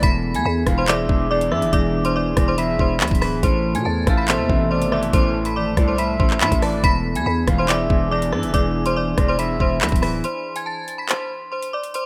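A cold, dark drill beat in half-time opens with a bright, ringing FM bell melody up front over knocking electronic drums with metallic hats, handclaps and rim clicks, a growling, buzzy 808-style bass, a twangy, slightly broken-up electric guitar with spring reverb, and a warbling, nostalgic tape-like pad sitting mellow in the background. A soft, breathy flute-like synth lead with vibrato and digital delay enters at 0.7 seconds as a second line, moving over E7 and Amadd9 chords. At 10.2 seconds the guitar, pad and bass drop out for a short break on A minor, leaving the bell and drums in a rough, dry home-demo mix.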